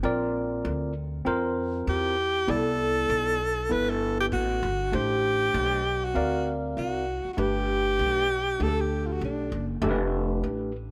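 Smoky and cool, this jazz-hop cut from a longer hip hop piece moves at 98 BPM with a swung 16th feel, as a worn, slightly out-of-tune tine electric piano, lightly overdriven through a combo amp, and a woody, thumpy pizzicato upright bass on gut strings play from the start over chords such as Cmaj9, Am9 and D7alt, while an alto saxophone, breathy and close-miked with mellow subtone and vibrato, sits up front with a solo jazz melody from 1.9 to 9.7 seconds, the whole set in a light studio reverb.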